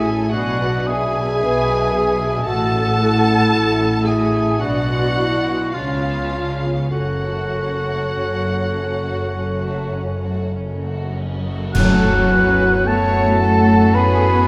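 Elegiac and yearning, this slow romantic orchestral movement in F# minor drifts at 48-58 BPM with a rubato feel, its melody carried by a veiled, con sordino violin section over muted violas, a close cello section, double basses, mellow French horns holding chords, a pure flute ensemble and a distant, roomy solo oboe, all set in a moderate scoring-stage reverb. At 6.9 seconds, as the harmony settles on F# minor, bright cymbals and concert bass drum enter. At 11.7 seconds a dark, close-miked clarinet and background trombones join for an ensemble accent, with very quiet timpani beneath.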